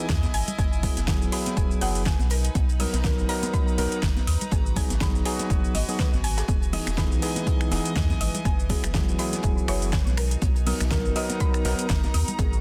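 A lightly swung 4/4 groove of punchy overdriven electronic kick and a layered deep house kit with finger snaps, metallic hats, shaker and a fat snare, backed by a very quiet, dark acoustic jazz kit and dry, hard-hand congas, drives this relaxed, sunny deep house excerpt, where a round analog bass pumps beneath barky, gritty electric piano stabs with tape echo, bright, earthy chamber strings, and woody, chorused mallet-like pluck arpeggios, until a warbling, nostalgic lo-fi pad enters at 7.3 seconds, all pressed into a dense, heavily limited modern master.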